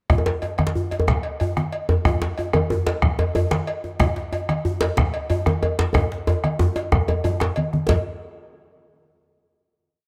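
A dry, close 1970s-style studio recording with light reverb captures a festive, powerful West African traditional drum ensemble piece in 12/8 at 123 BPM, where a round, up-front bombo and low-tuned, thick-skinned congas sit beneath a medium-tuned djembe with metal rattles played with hard hands, a saturated metallic cowbell carries the bell pattern, and a tight, cracking second djembe, entering at 0.2 seconds, leads with up-front phrases before a drum fill from 5.9 seconds leads into a final hit at 7.9 seconds.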